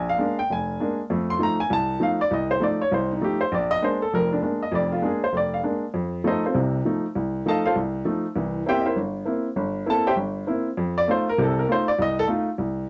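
A dark, warm mix set in a modest club reverb frames this playful, swinging jazz fragment at 198 BPM in F mixolydian, where a lone upright piano with a woody, short-sustained, up-front tone spans from deep F1 up to C6 over a progression moving through Bb7, F7 and C7 before the piece is cut off at 12.8 seconds.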